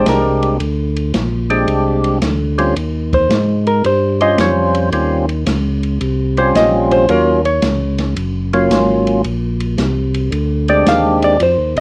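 A soulful, swinging soul jazz organ trio opens at once on a Bb13 chord, with a fat, percussive tonewheel organ carrying the melody through a slow rotary speaker and light overdrive, its third harmonic percussion and vibrato sitting up front. Beneath it, a second tonewheel organ plays the bass line with a full, thick tone, audible key click, chorus vibrato and a stopped rotary speaker. A clean, dark hollow-body electric jazz guitar is picked throughout, taking a solo across the whole passage. An open acoustic drum kit joins at 0.1 seconds with hi-hat, ride, a medium-tuned snare and a boomy kick, its smooth, rolled-off top giving it a small-room feel. At 111 BPM in 4/4 with a swung eighth-note feel, the harmony moves through Eb13 and Ebm7 before settling back on Bb13, all heard in a moderate club ambience through worn, warbling cassette tape with a drifting pitch, in this short cut from a longer piece.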